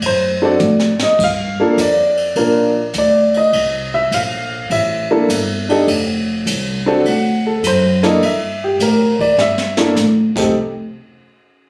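Captured on a phone in the room with club reverb and compression, this excerpt of a swinging jazz piano trio has a warm, sophisticated mood. A woody, vintage-toned upright piano sits up front and solos with long sustain across changes such as D7, Gm7, C13 and Gm69, while a dark, growly pizzicato upright bass on steel strings thumps beneath it. A brushed kit with a high-tuned snare and boomy kick plays short fills at 0.6 and 9.4 seconds before the trio stops at 10.5 seconds.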